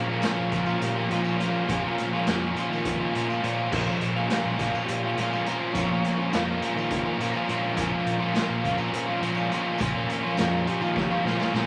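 A crunchy, double-tracked overdriven guitar sits up front, picking a riff in Bb dorian over a Bbm chord, while a reedy vintage combo organ with heavy vibrato holds sustained chords in the background alongside a fuzzed, fingered electric bass. This trippy, hypnotic psychedelic rock passage moves in 7/8 at 207 BPM in eighths. A raw garage drum kit with a boomy kick and gritty, rolled-off top joins at 0.2 seconds with a jingly tambourine very low in the mix, and a drum fill closes out the 11.7-second excerpt, all set in a wet studio ambience with vinyl crackle.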